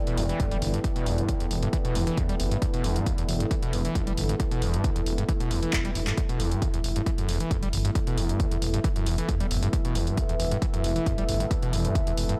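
Industrial and intense, this short cut from a longer piece is driving peak-time techno at 135 BPM in a straight 4/4, sitting on a single E minor chord throughout. A punchy analog drum machine supplies tape-warm handclaps and hi-hat from the start, and a heavy, layered electronic kick anchors the groove from 0.4 seconds. Up front, a screaming acid line squelches and snarls with resonant filter sweeps, its distorted sawtooth tone treated with chorus, cassette-tape grit and tape echo, while a dark detuned saw bass rumbles and beats beneath it through tube saturation. Behind them, an evolving analog drone built from pulse-width-modulated waves and a deep, moody ambient pad with its own reverb fill out the background, both pumping with the sidechain alongside the bass and acid line. Around 5.5 seconds a faint electronic swell appears in the background as a drum fill lands, and the mix stays dry with little reverb overall.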